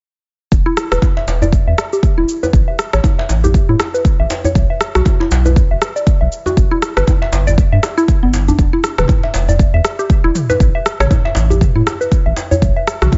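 A swung 4/4 groove at 119 BPM drives this hypnotic, driving afro house passage, cut from a longer track. A deep, up-front electronic kick anchors a layered deep house kit of cabasa, rim clicks and toms, both set in studio reverb. Beneath them, a dark analog bass built from square, sine and triangle waves with a wave-folded edge holds sustained, fast-attack notes between E1 and A2, breathing with sidechain pumping. From 0.7 seconds a woody, mellow mallet-like FM pluck spins arpeggios through chorus, dub echo and sidechain pumping, with a filter sweep and a moving notch shaping its tone, and a medium-tuned acoustic djembe with a small-room sound joins at 1.0 seconds. The harmony moves between chordless stretches and A, B5 and G5, all wrapped in a digital ambience that keeps the top end soft.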